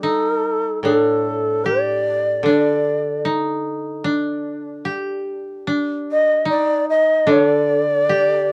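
Rubato phrasing loosely follows a pulse of 74 BPM in 4/4 through this short 8.5-second fragment of Japanese traditional chamber music, cut from a longer piece. The mood is solitary and meditative, led by an end-blown bamboo shakuhachi carrying the melody between A4 and Eb5, its breathy, reedy tone bright and up front, with vibrato and tongued, chiffy attacks. Two fingerpicked koto parts sound beneath it from start to finish: one plays a second line in the middle register from D4 to G4, while the other supplies accompaniment lower down, from A2 to G3. Both koto parts are dry and woody in character and sit close to the listener. A light reverb surrounds the ensemble, and the whole recording carries the worn, warbling character of old cassette tape, with a warbly drift in pitch.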